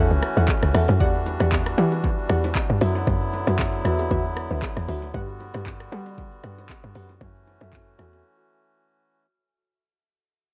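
Soulful and deep, this amapiano excerpt moves at 116 BPM in 4/4 with a 55% swing on the sixteenths, cut from a longer piece and fading out across its whole length. A tight, punchy log drum bass sits up front with a fast attack, decaying notes and a noise layer. Beside it, an electronic afro-pop kit brings a deep kick, dark hats, handclaps, rim clicks and shaker, while very quiet bongos and congas add ringing, vintage hand hits from 0.4 seconds. Mellow chord stabs with a soft, nasal, full-bodied tone and a filter pluck are coloured by chorus and tape echo, and a reedy, clear accordion holds sustained chords in the mids. The harmony moves through F#m7, Em9, D69 and Gmaj7 back to F#m7, and at 8.2 seconds everything but the accordion drops away for a brief break, all captured with a dry, cassette-tape character.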